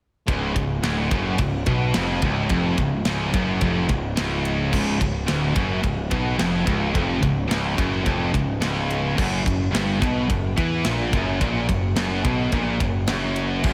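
Heavy and epic, this heavy metal excerpt moves at 108 BPM in a straight 4/4, with three distorted guitars riffing low from 0.3 s: one bright and high-gain, another scooped and carrying slapback echo, both sitting in the background, and a very quiet, double-tracked sludgy guitar. Up front, a growly, fuzz-laden picked electric bass drives alongside a tight metal drum kit of kick, medium-tuned snare, crash and ride. The harmony centres on C# before shifting to F#5 at 9.2 s, all set in a lush hall reverb that gives a big arena sound.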